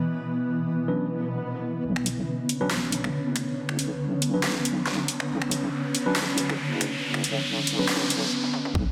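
Deep dubstep in a brooding, dark half-time swing, cut from a longer piece: a cloudy, evolving granular pad sits up front from the start while clean tine electric piano stabs pass through dub echo and a filter sweep, a swell and riser build toward a stop, a soft, saturated wobble bass of detuned square and sine tones and a prominent dubstep kit with a huge snare, bright hats, snaps, claps and toms arrive around 1.8 and 2.0 seconds over a Bmadd9 chord, and a tight, tape-warm electronic kick lands at 8.8 seconds as a short drum fill ends, the whole mix washed in lush hall reverb.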